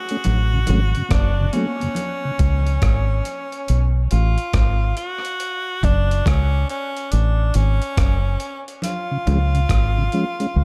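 A slow 70 BPM groove in 4/4, swung on the sixteenths, sets a deep, hypnotic dub reggae mood in F# harmonic minor, moving between F#m and C#. A gritty, compressed breakbeat sampler-style kit with a thumpy kick, hi-hat and rim click runs throughout, sounding tape-warm and re-recorded in a large room. Beneath it, a round, punchy fingered electric bass sits up front with a dark, foam-muted tone and anchors the low end. An edgy, forceful tenor saxophone carries the solo melody with vibrato and tape echo. A soft, flute-like tonewheel organ with key click and slow rotary speaker joins ringing, high-tuned congas with hard hands in the background, also touched by tape echo. Both drop out at 2.0 seconds and return near 8.8 seconds in this short excerpt from a longer piece, all within a dark production and small room ambience.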